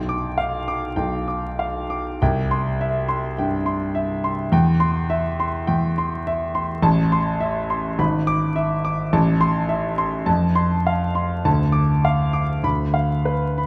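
A romantic classical character piece for solo piano, this fragment of a longer work carries a stormy, brooding mood at 104 BPM in 4/4, its beats pushed and pulled by a free rubato. A concert grand carries everything alone from 0.0 to 13.7 s, sounding clear and natural, set up front with a deep bass and long sustain across a range from G#1 to D6. The harmony opens in C major on G7/B, settling through C and C/E before turning to A minor at 6.8 s. From there the chords darken through E7/G#, Am, F and Dm, closing on an unresolved Bdim/D. A lush concert hall reverb surrounds the instrument, while a vinyl crackle lends the sound an aged patina.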